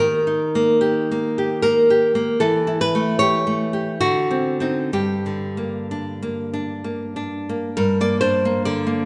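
A bright, fingerpicked nylon-string guitar sits up front in this melancholic, intimate fragment of a romantic classical guitar solo, unfolding in a rubato 3/4 across a range from G2 to D5 and moving through Eb, A7/E and D7b9 before settling on Gm at 4.9 seconds, all bathed in a wet church or concert-hall reverb whose sound tops out at 10.3 kHz.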